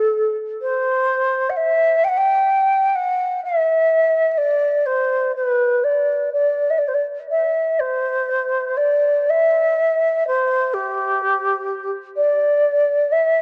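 Wistful and pastoral, this short fragment of Celtic folk drifts in a rubato 6/8 at about 41 BPM in D mixolydian, tuned slightly flat to A4 = 435 Hz. A breathy, woody flute carries the tune alone from 0.0 to 13.4 s, ranging from G4 to G5 with tongued notes, vibrato and a slightly unsteady quality, colored by cassette tape and analog delay. The home cassette recording places the flute up front in a small room, wrapped in moderate spring reverb.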